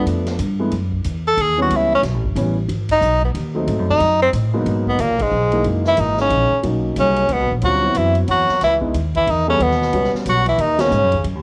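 Small-group swing and bop jazz in a brisk, swinging 3/4, cool in mood and cut from a longer piece, with a light reverb and small-room ambience that give it the feel of a home cassette recording. An edgy tenor saxophone carries the melody up front, forceful and present, with vibrato and scooped notes that give its lines a punchy bite. Beneath it, a concert grand piano comps with a deep bass register and a tape-tinged sheen, while a woody, thumpy pizzicato upright bass sits up front. A swinging big-band drum kit of hi-hat, ride, snare and boomy kick plays distant and roomy. At 4.9 seconds a bright trombone joins as a second line, its vibrato and forceful attack set back in the room, and band accents land at 2.9, 5.2 and 10.7 seconds.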